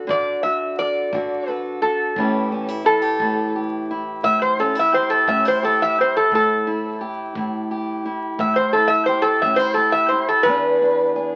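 A metallic, nasal resonator slide guitar played with a steel bar and fingerpicks leads this swaggering, rollicking acoustic country blues excerpt at 58 BPM in a straight 12/8, sharing the front of the mix with a bright, boxy fingerpicked parlour steel-string guitar moving from D to A7 and E7, while a dark, tight brushed kick sits in the background of a small studio room, all heard through the crackle of a very old 78 rpm record.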